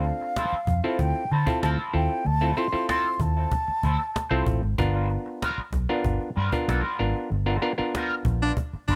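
A breathy flute with a crisp attack carries the playful melody through the first 4.5 seconds of this funk excerpt, over twangy electric guitar with wah and chorus, mellow clav stabs through a combo amp, a round, foam-muted fingered bass and a woody, soft-handed cajon, as the harmony moves from Dm9 to G7#9 before a band accent at 7.3 seconds and a punchy baritone saxophone entering at 8.4 seconds, in a lightly reverberant room.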